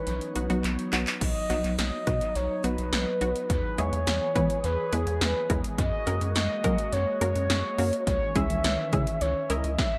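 Synth-pop in a wistful, nostalgic mood, this brief cut features a round, horn-like synth lead carrying the melody through chorus, dub echo and shimmer reverb over a bright, detuned unison pluck, a swirling, nasal phased pad holding sustained chords, a rubbery, hollow square-wave bass and up-front 80s electronic drums with a punchy kick, gated snare, metallic hats, handclaps and crash that play a fill from 0.6 to 1.2 seconds, all set in an echo-heavy mix with moderate spring reverb and lossy compression artefacts.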